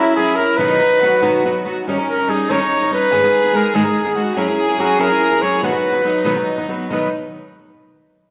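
A mellow trumpet, a chamber violin section and a flamenco guitar all sound together from the first moment of this short fragment of festive, proud mariachi music in 6/8. The trumpet carries the melody in a distant, roomy classical style while still sitting up front as the soloist. Beneath it, the violins play a second line with a gut-string, reedy period tone, light vibrato and a close, bowed ensemble sound. The up-front acoustic guitar supplies fingerpicked flamenco accompaniment with a warm body. The harmony moves from F#7 to B, then through D#7 and G#madd9 before returning to F#7 and B by 5.6 seconds, and all three parts stop at 7.1 seconds. A wet recital-hall reverb with a 1.6-second decay places the group in a church or concert hall.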